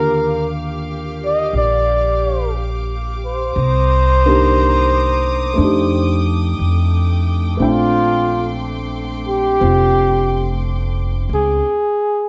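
This jazz ballad excerpt moves at a slow 60 BPM in 4/4 with a gentle swing, settling into an intimate, late-night mood in Bb major. A close-miked flugelhorn carries the melody up front, its soft attack, light vibrato and scooped notes set in a plate reverb that lends the solo a glowing halo. Beneath it, a woody upright piano supplies accompaniment while a bowed chamber string section holds sustained chords, played sul tasto with a hushed, velvety sheen. The pizzicato upright bass sits up front as well, dark and woody on steel strings, anchoring harmonies that pass from Ebmaj9 through Cm9 and F13 to Bbmaj13. At 11.6 seconds the piano, strings and bass stop, leaving the flugelhorn alone until 12.3 seconds under a light overall reverb.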